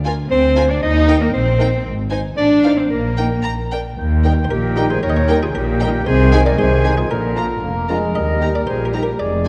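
Quirky and mischievous, this whimsical film cue at 115 BPM in 2/4 and Eb major opens with an up-front, dark double bass section using portamento beneath a rich, close chamber violin melody. Within the first second, a woody background violin section, a warm solo clarinet, a very quiet viola section and a lush cello section join in. At 4.0 seconds a new section begins as a clear cor anglais and a punchy bassoon enter, soon followed by background French horn chords, a muted, lute-like buff-stop harpsichord carrying its own melody line and an airy silver flute, all set in a roomy scoring-stage reverb.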